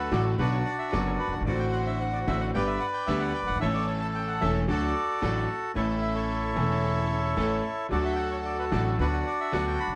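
A rubato 4/4 pulse around 112 BPM carries this nostalgic, elegant tango in D major, cut from a longer piece. A reedy, airy bandoneon sings the melody up front over a clear concert grand piano with deep bass, while a woody, thumpy pizzicato upright bass anchors the low end. Lush bowed strings with vibrato add smooth stabs in the background, and light reverb gives the ensemble a gentle sense of space.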